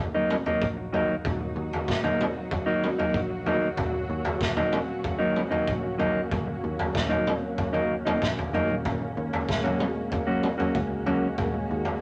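A steady, straight 4/4 pulse drives this short cut from a longer psychedelic rock piece, with a trippy, dark mood. A raw garage drum kit comes in at 0.3 seconds, up front in a small room, its boomy kick, medium-tuned snare and toms sounding gritty and saturated with a rolled-off top. A clean, fingered electric guitar plays a shadowy, mellow riff near the front. Beneath it a picked electric bass sits in the background with a round, foam-muted tone, while a soft vintage string machine holds silky sustained chords with a slow attack, long release and ensemble chorus. A moderate studio reverb surrounds the band, and the harmony shifts to a new chord at 8.8 seconds before the guitar stops at 11.6 seconds.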